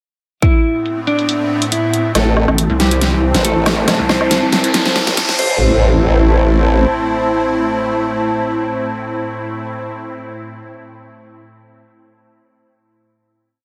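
Heavy, menacing half-time wobble dubstep piece in which a dark, clean electric guitar repeats a fingered riff in octaves over an evolving, morphing wavetable pad and an airy, breathy pad that pump against the beat, while a punchy electronic kick and a drum kit with a huge snare, closed hats, low woodblock and crash are joined by two detuned, overdriven wobble basses, one sweeping through a formant filter and the other pulsing and saturated, as a background riser builds to an impact before the guitar and pads ring out on a final note.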